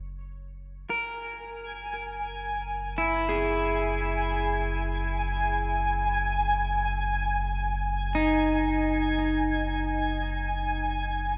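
A slightly broken-up electric guitar picks twangy arpeggios through tape echo from 0.9 to 9.5 seconds over a deep, round analog bass on F#1 that fades out across the whole excerpt, while a twinkling granular texture with octave-up shimmer enters at 1.7 seconds, all floating in free time in F# mixolydian under huge reverb in a dark production for a weightless, peaceful ambient mood.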